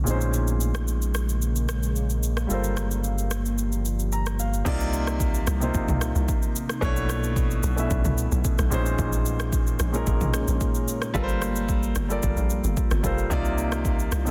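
A tight, percussive log drum bass with a fast attack takes over the low end at 4.7 s in this hypnotic, deep amapiano excerpt at 111 BPM, following a round, up-front analog bass that holds the opening, while a warm grand piano with short sustain plays minor-eleventh chords over a moody, detuned ambient pad with chorus and reverb in the background, and a punchy, layered deep house kit of kick, rim click, shaker, toms and crash, its snare softly clipped, drops the kick at 3.6 s as the piano plays a fill into the change.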